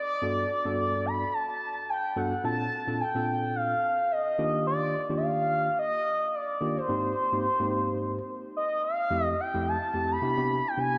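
Soaked in a long plate reverb that lingers for 3.3 seconds, this short cut from a longer funk piece has a dreamy sound and a smooth, feel-good mood. It moves at 108 BPM in 4/4 with a light swing on the sixteenths, tuned slightly flat to A4 = 436 Hz. A worn tine electric piano enters at 0.2 seconds as accompaniment, sitting up front with a lightly overdriven, tube-saturated tone, slightly out of tune and heard as if through built-in speakers. Over it, an expressive synth lead carries the melody from the very start, its nasal blend of sawtooth and triangle waves given a fast attack, long sustain, vibrato, chorus and delay. The harmony glides through lush major ninth chords, Gmaj9, Bbmaj9, Ebmaj9 and Abmaj9, before a new section at 9.1 seconds shifts to Fmaj9 and Cmaj9.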